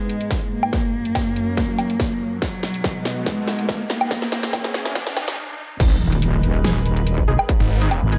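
A half-time dubstep pulse in 4/4 drives this menacing, chaotic fragment of a heavy wobble track, with a distorted electronic kick sitting up front alongside a layered drum kit of huge snare, bright hi-hats, crash cymbal and woodblock. A dark, woody solo cello carries the opening melody, bowed close and intimate, while a lush unison pad of detuned saws holds sustained chords in the background, coloured by chorus and phaser and pumping against the kick. Through the build-up a drum fill, a filter sweep and an electronic riser gather tension before a brief stop at 5.4 seconds. The drop lands at 5.8 seconds with an impact and a heavy, saturated wobble bass, followed by bold, nasal orchestra-hit-like synth stabs trailing tape echo. A snarling, growling distorted saw bass bursts in at 7.6 seconds, and the whole mix sits in light digital ambience.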